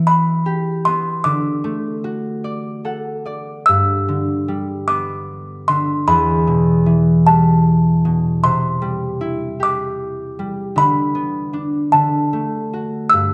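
This children's lullaby, taken from a longer piece, drifts at a rubato 51 BPM in 6/8 and G major, with an innocent, gentle mood. Up front, a tinkling, mellow music box carries the melody between A5 and E6, while a fingerpicked concert harp supplies ringing accompaniment over chords moving from Em and D to G, Cadd9 and Bm/D. The harp adds a fill from 2.4 to 3.7 seconds, leading into the second section, and both parts sit in a reverberant recital hall.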